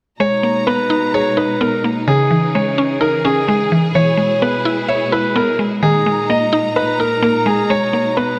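Menacing and hard-hitting, this half-time hip hop passage sets an up-front, vintage-toned concert grand piano melody, darkened by a low-pass filter and tape echo, over a woody, chorused FM synth pluck and a bowed studio string section with vibrato holding sustained chords, all three playing together from 0.2 s to 8.4 s in a lush hall reverb as the harmony moves from G#madd9 through C#madd9, E and D#sus4 back to G#madd9.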